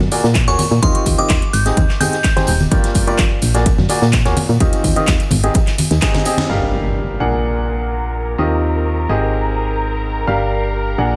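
A punchy, round FM bass with tube saturation and sidechain pumping, an airy acoustic jazz kit of dark ride and snare, and ringing congas and tambourine in the background together open this bittersweet, soulful piano house excerpt at 127 BPM in G phrygian. They are soon joined by a layered house kit with cracking snare, metallic hats and handclaps, and a tape-warm electronic kick up front. A brilliant, intimate baby grand riff with audible action noise and long sustain carries chords such as Bb7alt, Eb69 and Abmaj7, while a glassy, crystalline FM bell melody with chorus, phaser and delay sounds until 2.5 seconds. After a drum fill and band accent, the drums and percussion stop by 6.5 seconds as a distant, lush bowed violin section with vibrato enters under a filter sweep, an electronic impact sounds in the background, and the piano and bass play on in the echo-heavy, small-room mix.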